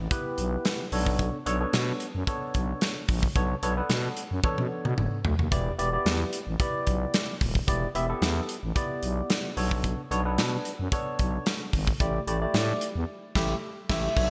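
A growling FM bass opens this slick, funky early-eighties boogie funk cut in B minor at 111 BPM, joined at once by a barky tine electric piano bathed in lush chorus and a polished modern studio drum kit with gated reverb, bright cymbals and a tight kick, moving from Em through Bm9, Em7 and A7sus4 with a drum fill at 4.4 seconds and a band accent at 13.1 seconds before a hollow, woody clarinet-like synth lead with chorus and vibrato enters on a single E5 at 13.9 seconds, all set in a hall reverb with bright 1980s-style digital production.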